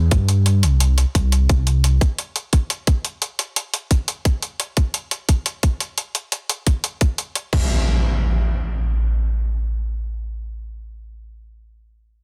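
A dark, detuned saw bass rumbles up front for the opening 2.0 seconds of this melancholic, dreamy liquid drum and bass excerpt at 174 BPM, joined by a tight, layered electronic kick and a gritty, pitched-up jungle sampler-style kit with crash cymbal and hi-hat in small room reverb, before an electronic impact arrives at 7.5 seconds and carries on to 11.3 seconds over a dense, heavily limited modern master.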